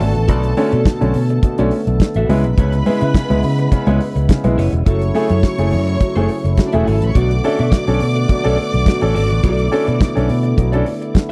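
Disco in a sultry, driving groove, with a dry, damped 70s drum kit of tight kick and medium-tuned snare and a punchy fingered electric bass sitting up front, while an intimate baby grand piano with audible action noise, a percussive tonewheel organ turning through a slow rotary speaker, a slightly broken-up lo-fi electric guitar with spring reverb in the background, and a distant, lush bowed string section carrying the second line fill out a Bm7 to C#m7 to F#m7 progression in this close, 1970s-style studio excerpt.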